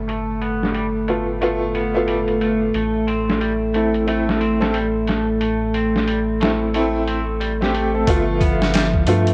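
A swung, gritty boom bap drum kit with a thumpy kick, a pitched-down sampler feel and filtered, tape-worn hats and snare sets a dark, cinematic trip hop groove, moving from G7 to A minor over a round, deep analog bass and a moody, detuned pad with chorus and cassette grit. A clean, twangy electric guitar picks filtered arpeggios through tape echo, and at 1.1 seconds a brilliant, woody upright piano with audible action noise joins up front, its accompaniment shimmering with tremolo. A very quiet, tense string-like drone hovers underneath until 8.1 seconds, when the harmony returns to G7 in this cut from a longer piece, all set in light digital ambience with a home cassette character.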